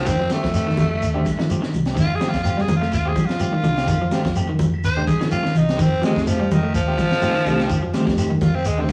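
Afrobeat excerpt with a hypnotic, funky groove, where a raspy, breathy tenor saxophone solos up front over a round fingered bass, a twangy, slightly broken-up guitar picking arpeggios, dark clean semi-hollow guitar stabs with tremolo, a tight funk drum kit with a high-tuned snare and sampler grit, bright background congas, a grainy shekere and faint, woody claves, while a barky, overdriven reed electric piano with fast tremolo appears at 6.0 seconds, all in a rough rehearsal-room recording with vinyl crackle.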